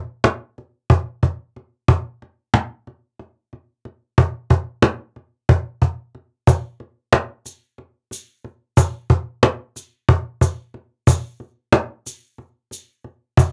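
Progressive instrumental music in a tense, driving 7/8 at 183 BPM counted in eighths, with a straight feel. A cajon carries the piece from the start, its woody, acoustic tone sitting up front with faint snares buzzing underneath and a vintage, band-limited character. At 6.5 seconds a tube shaker joins, grainy and bright, set well back in the balance with a touch of live room around it. The two percussion parts carry on together through the close of this short section, which is cut from a longer piece. The sound is dry and close, in the manner of a 1970s studio recording, with only light reverb.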